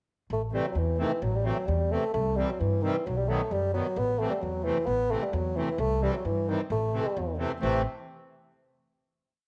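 A mellow, close-miked bassoon with vibrato and an upright bass enter together at 0.3 s, opening this short, bittersweet yet fiery Balkan wedding-band folk piece in A dorian sharp4 at 131 BPM in a straight 2/4, where the up-front bassoon sings a classical-style solo of motif-based sentence phrases over woody, pizzicato bass playing root and fifth on the main beats, while a reedy, dry accordion with slow beating joins at 0.5 s with full off-beat triads through Am, C and B, all set in a modest echo-chamber and small-room reverb before closing on a final chord at 7.6 s.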